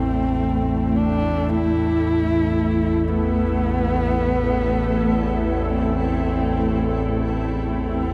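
Huge ambient reverb with a long 8.7-second tail surrounds a warm, shadowy production in this unsettling, ominous dark ambient drone, cut from a longer piece and lasting 8.1 seconds. Set in free time in A minor, tuned to A4 = 441 Hz, it rests on a single Am7 chord. Up front, a vintage analog drone holds the low register with sawtooth and pulse-wave tones, its pulse-width modulation and chorus giving it an evolving, warbling character through slow attacks and long releases. Above it, a granular cloud pad sustains blurred, full-bodied chords of detuned sine voices in unison, softened further by its own built-in reverb. A single horsehead fiddle player, also up front, carries the melody with a nasal, woody, husky bowed tone, using vibrato and portamento on horsehair strings, with tape echo trailing each phrase.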